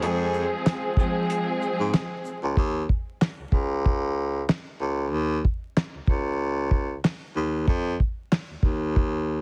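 Reflective yet tough, this swung boom-bap hip-hop fragment opens with a lush, bowed string section gliding on vibrato and portamento, while filtered horn stabs with digital delay sit in the background, both gone by 2.3 seconds. Up front, a jazz-style baritone saxophone carries the bass with scooped notes over a dry, cloth-damped drum kit of fat snare, tight kick, handclaps, shaker and hi-hat; the kick drops out briefly, and the hi-hats fall silent from 2.6 seconds as the harmony shifts to suspended chords. Little reverb colours the heavily compressed, radio-like sound, which carries a dusting of vinyl crackle.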